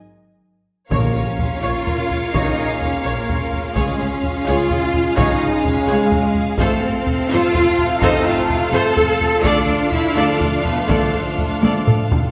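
Cinematic, epic orchestral film score in Bb minor at 84 BPM in 6/8, heroic in mood: from 0.9 s, distant vibrato violins carry the melody over a lush second violin line, focused violas, close cellos and smooth double basses in the background, while bright trombones, mellow French horns and a full string section hold sustained chords, hard-stick taiko drums pound throughout, and round soft-mallet timpani sound only until 1.6 s, with the orchestra set in a reverberant concert-hall space.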